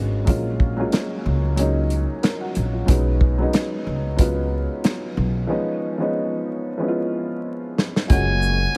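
Boom-bap hip-hop with a confident, nostalgic mood and a gently swung feel, taken from a longer piece. A dark, worn upright piano carries the chords, its mellow, slightly detuned tone marked by audible action noise. A pizzicato upright bass with gut strings adds a woody, thumpy low end, and a soul drum kit joins at 0.3 seconds with tight kick, medium-tuned snare, hi-hat and shaker in a pumping small booth with a rolled-off top. A break arrives at 5.5 seconds and ends in a drum fill. At 8.1 seconds a muted trumpet enters as a brief jazz-style solo, its buzzy, thin and brilliant tone shaped by vibrato, soft attacks and scooped notes. Light reverb, small-room ambience and vinyl crackle surround the whole.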